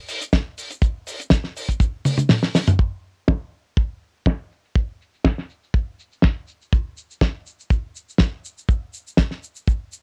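A dry, close booth sound with cassette-tape grit gives this groovy, cosmic nu-disco excerpt at 122 BPM a homespun feel, with a lightly swung 16th-note pulse. Up front, a damped 70s drum kit with a fat snare, hi-hat, shaker and toms carries a dulled, rolled-off top, while a tight acoustic kick drum sits beside it. After a drum fill and a band accent, during which the kick briefly drops out, a filter sweep on the kit runs from 2.8 seconds to the end.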